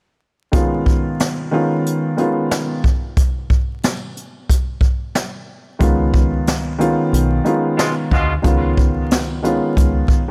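A swung 16th-note groove at 91 BPM in 4/4 drives this boom-bap hip-hop excerpt, with a brushed jazz kit playing from the start: a high-tuned snare, a boomy kick and hi-hat, sitting up front with a natural studio-room sound. Alongside it, a dark, intimate baby grand piano plays the accompaniment, opening on a C#9 chord. The piano has audible action noise and a smooth, vintage character, colored by cassette tape and filtering. At 5.8 seconds a deep, round, foam-muted fingered electric bass enters in a low register as the music moves into its second section. A tight, mellow horn section with light vibrato and a smooth top adds a brief jazz-style stab at 7.8 seconds, filtered and touched with digital delay. Vinyl crackle and light small-room reverb give the whole piece a nostalgic, warm feel, and it is tuned slightly sharp to A4 = 441 Hz.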